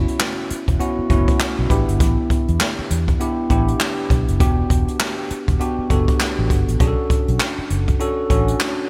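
R&B in a new jack swing style, this punchy, bouncy clip of a longer piece rides a swung 16th-note feel through suspended seventh chords into lush minor ninths. A bell-like tine electric piano with subtle chorus sits up front, while a vintage foam-muted fingered electric bass gives a dark, round bottom. A jazz brush drum kit with a boomy kick, medium-tuned snare, hi-hat and handclaps carries gated reverb, all framed by a bright 1980s-style digital production and a small room ambience.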